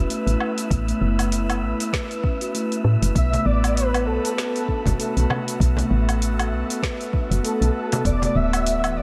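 Hypnotic organic downtempo with a lightly swung groove, built on a woody, round FM bass up front, soft sustained pad chords with sidechain pumping and shimmer reverb, ringing steel tongue drum arpeggios through delay, a faint wind-like noise texture, an overdriven afro-pop kit of cabasa, woodblock, metallic hats and snare, and a soft electronic kick, with a breathy flute-like synth lead carrying the melody from 3.1 seconds, joined by a bright, dry frame drum soon after.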